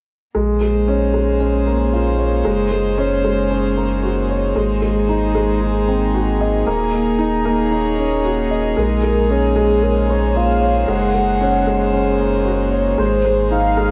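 Steeped in the wet bloom of a recital hall, this intimate, moving electronica excerpt in Bb minor at 114 BPM sets a dark, mellow baby grand piano riff with shimmer reverb and digital delay up front over a round sine sub bass and distant, reedy gut-string quartet chords, and a velvety, detuned synth lead with chorus and vibrato joins them to carry the melody from 8.8 s.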